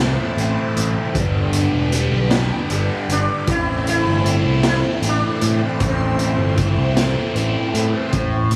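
A light, small-room ambience frames this hypnotic, dark psychedelic rock excerpt in A minor at 52 BPM in 6/8, where an up-front, double-tracked overdriven guitar riff with phaser and a growling, overdriven fingered bass sit over a swirling, phased string machine holding bright sustained chords in the background, a gritty garage drum kit with punchy kick and rolled-off top joins at 0.4 seconds, a buzzing, shimmering sitar with slapback echo carries the melody from 3.1 seconds, and a warbling analog drone on A1 surfaces at 8.3 seconds as the chords move through Amadd9, G and Am.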